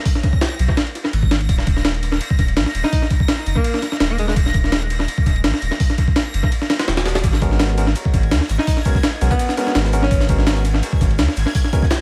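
A reversed, dreamy texture opens this frenetic, raw excerpt of jungle drum and bass, floating bright and granular in the background as a compressed, pitched-up breakbeat kit with a thumpy kick and high-tuned snare drives up front with analog delay, and a thick, saturated sub bass arrives at 0.6 s. A clear alto saxophone plays jazz-style solo phrases with scooped notes and dub echo, first at 2.8 s and again later. From 7.2 s a very quiet, crunchy acoustic break with shaker joins, followed at 7.4 s by barky tine electric piano stabs carrying 12-bit sampler grit, all set in an echo-heavy studio reverb with vinyl crackle.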